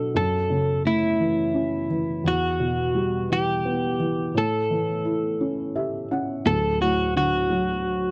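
A clean, picked electric guitar carries the melody up front, its compressed tone sitting in a narrow band from E4 to A4 and giving this short pop excerpt a romantic, heartfelt voice. Beneath it, a felt-muted upright piano supplies the accompaniment across a broad span from D1 to F#5, its thick felt lending a soft, dark, intimate color with short sustain. The music moves slowly in a straight 6/8 at 57 BPM counted in dotted quarters, in D major with tuning set to A4 = 438 Hz. The harmony steps through F#m7, Em and A7 before landing on D at 6.5 seconds, where a brief new passage begins, and the piano adds a mellow fill from 5.4 seconds leading into that arrival. The sound is dry and close, like a 1970s studio recording, with only light reverb around it.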